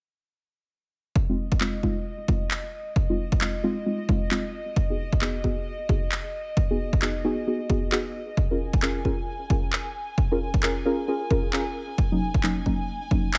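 A skippy two-step garage groove at 133 BPM in 4/4 opens this soulful excerpt, its 16ths swung at 60%, with a punchy, tape-warm electronic kick entering at 1.2 s and layered electronic handclaps following at 1.6 s, both sitting up front with studio reverb. Deep, mellow chord stabs in the low-to-middle register carry the harmony through Fm7, Abm7, Bbm7 and Ebm7 in F phrygian, their dark, vintage tone blending triangle, sawtooth and sine waves with a fast attack, a decaying tail, a filter sweep, chorus and delay. Above them, an airy, breathy pad holds sustained chords high in the register, its detuned synth layers and noise texture warbling softly through chorus while sidechain pumping gives it a breathing motion. The pad sits well back behind the up-front drums and stabs, its slow attack and long release softening the edges until it ends at 13.4 s. A light reverb ties the sound together, and the excerpt is tuned slightly flat, to A4 = 437 Hz.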